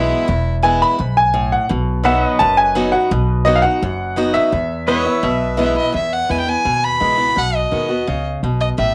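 Honky-tonk and classic country at 170 BPM in E major, sunny and nostalgic, with a bright, slightly detuned upright piano carrying the melody up front through a cassette-tape tint, its action noise audible, over picked, boxy archtop guitar with finger squeak, a thumpy pizzicato upright bass and clean, compressed pedal steel sustaining chords with volume swells until 5.9 s, while a nasal, smoothly bowed fiddle with light vibrato, heard briefly at the very start, returns as a second line at 4.9 s and takes a solo from 5.9 s, all captured in a small room on a home cassette recording.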